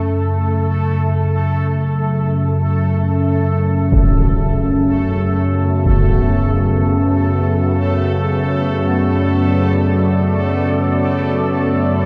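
Dark and desolate, this short fragment of a dark ambient drone drifts in free time, moving from F#m to Bm7/F# under a huge ambient reverb with a long, dark tail. An up-front analog drone holds the low floor from the start, its sawtooth and pulse-wave tone slowly evolving through pulse-width modulation, with a slow attack, long release and mellow chorus sheen. Alongside it, a bubbling texture of detuned sawtooth steps through random, resonant filter changes, sitting lower in the mix and bathed in its own reverb. A huge, bright impact lands at 3.9 seconds, softened by a low-pass filter, and at 5.9 seconds a deep, moody pad enters with sustained chords built from detuned unison sawtooths, a sine sub octave and chorus. The overall production feels dark and warm, with slow-blooming sounds that leave the space feeling vast and empty.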